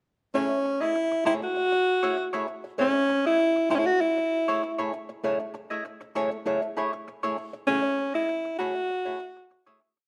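A light reverb and small-room ambience frame this short, complete funk piece, giving it a close and intimate sound. The mood is sly and cool, moving at 98 BPM in a straight 4/4 feel in F# dorian, resting on a single F#m9 chord. Up front, a breathy alto saxophone carries the melody with vibrato and a hushed subtone, stating motif-based call phrases in a jazz style between C#4 and F#4 from 0.3 to 9.8 seconds. Beneath it, a dark, clean hollow-body electric jazz guitar, also up front but lower in level, plays picked sixteenth-note funk rhythm with muted scratches through a wah pedal. The piece fades out from 7.7 seconds to its close at 10.1 seconds.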